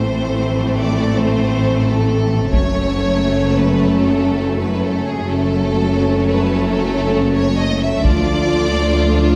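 Relentless and heroic, this cinematic orchestral film score excerpt moves at 87 BPM in 4/4, with a warm, lush violin section carrying the melody over a rich second violin line, a dark, distant viola accompaniment and mellow French horns holding sustained chords. A clear, even double bass section and an expressive cello section, set in the background, anchor the low end beneath chords of Am, F#m and Dm. A taiko ensemble struck with hard sticks in a live room bursts in at 2.5 seconds and again at 8.0 seconds, all set in a light reverb.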